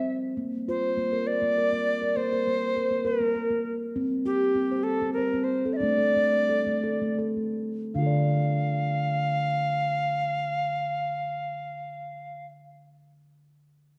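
Gentle and meditative, this short cut from a longer piece sits in world meditative territory, moving in a slow 6/8 at 50-67 BPM in D minor. A bright cedar flute carries the melody up front from the start, its airy, woody straight tone tongued and expressive as it sings between G4 and F5. Beneath it, a steel tongue drum played with soft rubber mallets spins arpeggios from D3 to D5, its round, pure ringing close-miked, dry and full. The pace slows between 4.0 and 7.9 seconds, and the harmony settles on D minor as a second section opens at 7.9 seconds. A wet recital hall reverb lends the whole a dark, warm glow alongside a small room ambience, and the flute ends near 12.5 seconds, with the drum following at 12.6 seconds.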